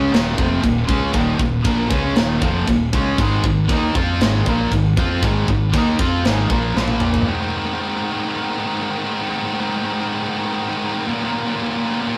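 Heavy and dark, this heavy metal excerpt is cut from a longer piece and moves at 118 BPM in a straight 4/4, tuned slightly under standard pitch. Two picked, distorted electric guitars drive the riff across Eb5, Ab5 and Bb5 power chords. The high-gain one sits up front with a bright edge, while the compressed second guitar stays in the background. A fingered electric bass adds a growly, punchy, direct low end, and a tight acoustic drum kit with a mid-forward sound, medium-tuned snare, china cymbal and toms hits a fill that ends at 7.3 s. From there the high-gain guitar carries the riff alone over Ab5 and back to Eb5 until 12.2 s, all in the rough, roomy feel of a small rehearsal space.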